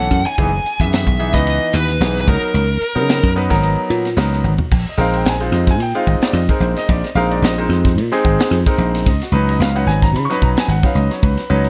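A lightly swung sixteenth-note groove at 110 BPM drives this bright, funky electric jazz fusion excerpt, with a tight, dry funk drum kit (high-tuned snare, tight kick, hi-hat, ride, crash and toms) and a foam-muted, thumbed slap bass sitting up front. A dark, overdriven lead guitar with slapback echo states the melody only until 3.3 s, while an intimate baby grand piano, its action noise audible and its notes ringing long, carries the lush suspended thirteenth and ninth chords throughout. A drum fill at 4.4 s ushers in a new section in a close, nearly reverb-free room.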